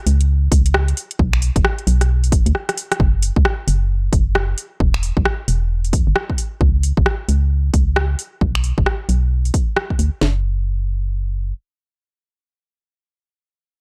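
UK garage in a two-step vein, this soulful, late-night piece swings its sixteenths at 133 BPM in 4/4, cut from a longer track with a dark, dry production. An organ-like FM bass, hollow and percussive with a fast attack and decay, sits up front from E1 to E2 and runs until 11.5 seconds. Two layered electronic house drum kits, both tape-warm and up front, carry the groove: one with a punchy kick and cracking snare, the other with finger snaps, rim clicks and metallic hi-hats, with a drum fill and break between 2.5 and 3.0 seconds closing out the opening drop.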